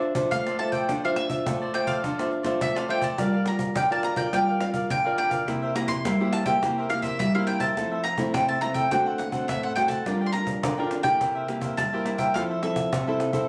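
A straight 4/4 samba and choro groove from a snappy cajon with snares, played with hard hands, carries this lively, nostalgic fragment of a longer piece, where a bright, woody picked mandolin sings the melody up front in double strings over a fingerpicked classical nylon-string guitar, also up front and warm, and a crisp picked cavaquinho, moving from Dm9 through Gm7 and C7 to Fmaj7 and D7, all heard as if caught on a phone in a club with moderate reverb.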